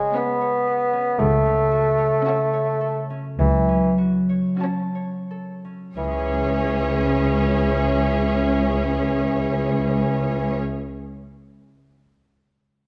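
Classical, a slow romantic orchestral movement in C# minor at 42-58 BPM, melancholic and yearning, flowing with rubato and slowing down over its first 6.0 seconds in a reverberant concert hall. A bright, ringing harp plays arpeggios from the start alongside a soft-attack bassoon accompaniment, while a lush violin section carries a vibrato-rich melody on C#5, and a second, distant violin line with portamento sits beneath it alongside a rich, even viola section. At 1.2 s the cello and woody double bass sections enter together on a low C#2 bass, grounding the harmony as it moves from F#m/C# to C#m at 6.0 s in this cut from a longer piece.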